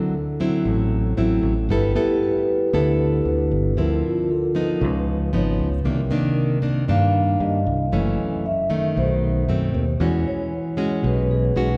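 A vibraphone played with soft mallets carries the solo across this brief bossa nova passage, its ringing, airy tone shimmering with a fast motor vibrato. The mood is romantic and sunny, moving at 116 BPM in a straight 4/4 feel, tuned to A4 = 441 Hz. Up front in the mix, a fingerpicked nylon-string guitar with fresh strings supplies classical-style accompaniment, and touches of finger squeak can be heard. A fingered electric bass joins at 0.7 s with a growly, punchy presence. The harmony moves through lush extended chords, from D9 and G69 through Dm9, Db9 and Cm9, before turning to Gbm7, B7b9 and finally E69. A wet church reverb with a 2.5-second decay gives the whole fragment the spacious resonance of a large hall.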